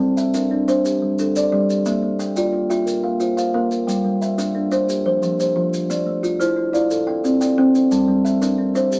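This is a southern African traditional piece built on an mbira-style interlocking cycle in 12/8, moving at 119 BPM in dotted quarters with a straight feel, in G dorian and tuned to A4 = 442 Hz. Two kalimbas carry the arpeggios from the first moment: the up-front one has a hollow-box, woody body with a vintage, band-limited glow, while the second, set lower in the balance, sounds from a solid board and reaches higher, spanning F3 to F6. Both are soft, fingertip-plucked and ringing, giving the music a hypnotic, trance-like pull. Grainy maracas slip in at 0.2 seconds, sitting far back with a small-room acoustic quality. The harmony moves from Gm to Bb and back to Gm, then through F5, Am and C5 before returning to Gm, all within a moderate studio reverb and a layer of vinyl crackle, in what is a short excerpt from a longer piece.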